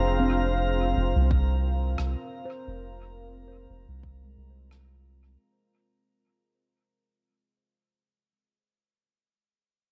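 Recorded at home on cassette, this short ambient dub fragment carries an audible room ambience and sits in F minor at 88 BPM in 4/4, with a light swing on the sixteenths and a spacious, meditative mood. A deep, moody pad holds sustained F minor chords up front, its detuned sawtooth layers softened by chorus and reverb into a mellow haze, while a round, soft sub bass sits equally forward beneath it. A handpan plays ringing arpeggios in the background, dark and smooth under a low-pass filter and analog delay, and it keeps sounding until 7.4 seconds, after the pad, bass and texture have stopped at 5.4. High above, a faint, glassy texture of drifting overtones hovers on a single bright note, its chorus and reverb giving it a calm shimmer. A deep electronic kick enters at 1.3 seconds with a cassette-tape tint, and a quiet rim click with dub echo and a big-room character joins at 2.0 seconds, both kept well in the background. 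The whole fragment is cut from a longer piece and fades out across its length.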